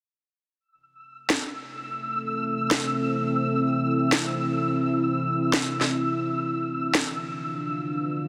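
A half-time drum and bass feel in free time drives this heavy, dark excerpt, where a flickering, granular texture enters at 1.2 seconds, a cracking, layered electronic snare joins up front at 1.3 seconds, and a deep, moody sawtooth pad with a sub octave and chorus fades in with a slow attack at 2.1 seconds to hold sustained Am and Bdim chords, set in a huge ambient reverb and a dense, heavily limited modern master.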